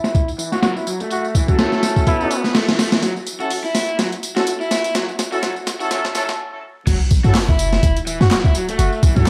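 Swaggering and funky, this short breakbeat cut at 125 BPM in F# minor rides a gritty, thumpy sampler-style drum kit with electronic tambourine and handclaps, while an overdriven, lo-fi garage guitar riff and a warm brass ensemble entering at 1.5 seconds build under a filter sweep, with a veiled, raspy bucket-muted trumpet carrying the melody through a telephone-like filter and digital delay. A drum fill and a brief break give way at 6.9 seconds to a drop, where a deep, boomy 808-style bass with tube saturation and a background electronic sub drop hit together. The dark production carries vinyl crackle, 12-bit sampler grit on the brass, and a moderate room reverb.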